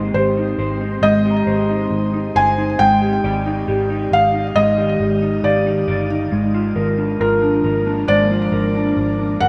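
A felt-muted upright piano carries the melody up front in this dreamy, ethereal dream pop fragment at 68 BPM, its soft, intimate tone bathed in shimmer reverb and delay, with audible action noise. A dark, clean electric guitar plays arpeggios through analog chorus, shimmer reverb and delay, while a round, foam-muted picked bass anchors the chords Cm7/Ab, Ebmaj7/Ab at 2.8 seconds and Bb/Ab at 6.3 seconds. A very quiet, detuned airy pad sustains beneath, and a bell-like, sweet celesta sparkles in the background, all set in a lush hall reverb with a rough home-demo feel.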